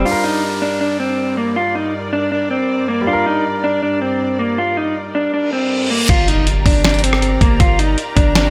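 A brooding, eerie trap piece in G minor at 159 BPM with a half-time feel opens on a slightly broken-up, lo-fi electric guitar melody with digital delay, up front over a clear, intimate grand piano with audible action noise, a dark, woody bowed string section and a deep sine 808 note, while an electronic downlifter sounds and a reverse cymbal at 5.5 seconds leads into an impact at 6.1 seconds, where the piano stops and the 808 returns alongside a gritty, compressed sampler-style drum kit of thumpy kick, fat snare, hi-hat, rim click, finger snaps and crash cymbal, set in light reverb and digital ambience.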